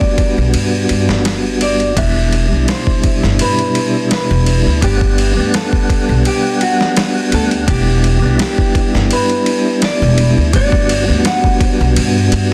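Trip hop at 84 BPM in a straight 4/4, dark and hypnotic, this excerpt cut from a longer piece pairs a clean, fingered electric guitar melody touched with tape echo against a round, lightly overdriven tonewheel organ with third-harmonic percussion, chorus vibrato, a fast rotary speaker, tremolo and echo, over a gritty, up-front sampler-style drum kit of thumpy kick, medium-tuned snare and ride cymbal re-recorded in a small room, while a woody pizzicato upright bass enters at 0.4 seconds, all moving between Gmaj7 and Em7 in light reverb with a dense, heavily limited modern master.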